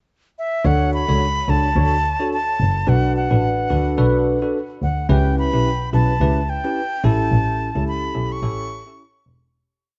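Worn, warbling cassette tape with drifting pitch and a dulled top end colours this short, sultry, mellow afrobeats piece, set in a small room with light reverb. A breathy, reedy concert flute with vibrato plays call-like motifs up front from 0.4 s, over syncopated, bell-like electric piano chords with lush chorus and a bouncy, syncopated bowed double bass, muted and nasal, moving through Dmaj7, Bm7, C#m7b5 and A7 with a gentle swing. The chorus fades out from 7.3 s to the end at 9.5 s.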